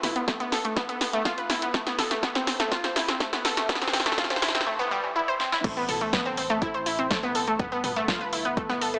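A lush, detuned unison pluck leads this dark, dramatic melodic techno excerpt, spinning bright arpeggios in A minor at 123 BPM with a gritty 12-bit sampler edge, sidechain pumping and dub echo, while a punchy analog drum machine rolls through a long fill of toms, snare, hi-hat and crash. A tight, driving sequencer bass sits in the background with its own sidechain pumping, and an overdriven, layered electronic kick joins at 0.3 seconds. The build-up moves over G, a rootless F/A and C5, the drum machine's punchy snare sounding re-recorded in a large room and held up front, with one more fill at 5.4 seconds. At 5.6 seconds the drop lands on A minor and then G, the deep kick anchoring the filter-swept, ring-modulated pluck. A long scoring-stage reverb bathes the mix, while a high-pass filter gives it a thin, small-speaker character.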